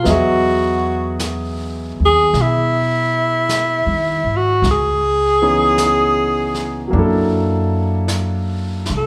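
Wistful and melancholic, this short jazz ballad excerpt moves at a slow 52 BPM in 4/4, with a swing feel on the eighth notes. A breathy alto saxophone carries the melody up front, its subtone voice colored by light vibrato and scooped notes in a tender jazz style. Beneath it, a clear concert grand piano supplies accompaniment with deep bass and long sustain, while a woody pizzicato upright bass anchors the low end. A brush kit joins at 0.1 s, sitting softly in the background with brushed snare and hi-hat. The harmony drifts from Emaj9 to Dbm9 at 4.6 seconds and then to Gb7alt, all framed by the moderate reverb of a recital hall that lends the ensemble a spacious, intimate glow.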